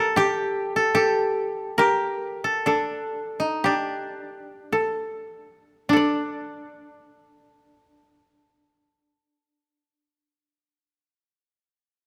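In a free, rubato 4/4 that drifts between 51 and 78 BPM and slows over the first 5.9 seconds, this calm, austere excerpt of Japanese traditional chamber music pairs two koto played with fingerpicks throughout. One carries the melody while the other adds a second line reaching a little higher, both sounding woody, dry and up front, tuned to A4 = 442 Hz. Close, detailed microphones and a light reverb frame the plucked strings, and a new section begins at 5.9 seconds.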